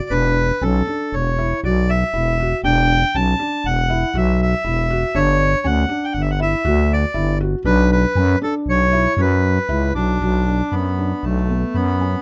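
Contemporary chamber music in an uneven 5/4 meter, this restless, urgent fragment from a longer piece sets a reedy, hollow accordion melody up front over soft arpeggios from a felt-muted upright piano with audible action noise, anchored by a growling FM bass, all in a close, detailed recording with light reverb as the harmony moves from Em11 through G5 to Bm.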